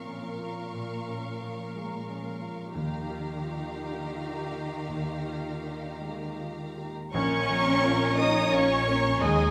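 A wet concert-hall reverb surrounds this sorrowful, moving excerpt of cinematic film score in 6/8, moving rubato at about 52-60 BPM in Bb dorian over Bbm and Ebadd9 harmony. A lush, vibrato-rich violin section carries the high melody above a focused second violin line, smooth violas, a vintage-toned grand piano, ringing fingerpicked harp arpeggios and expressive cellos with portamento in the bass. At 7.1 s, as the chord returns to Bbm, a mellow clarinet and a distant oboe join on a second line while a very quiet horn section holds sustained chords. A moment later a hollow, airy flute joins that line and a close, even double bass section deepens the low end.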